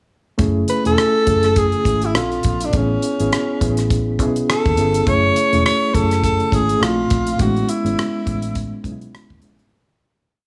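Light reverb and a small-room ambience frame this short, cinematic and silky piece of lush 1970s-style soul at 103 BPM with a swung sixteenth feel, where a breathy, close-miked tenor saxophone carries a jazz-style, motif-based melody with vibrato from 0.7 seconds over reedy electric piano chords in rootless voicings with fast tremolo, a dark, foam-muted fingered bass line with slides and chromatic approach notes, and a dry, damped drum kit of tight kick, hi-hat and rim click, moving through F#m9, A#maj9 and Amaj9 before fading out from 7.4 seconds.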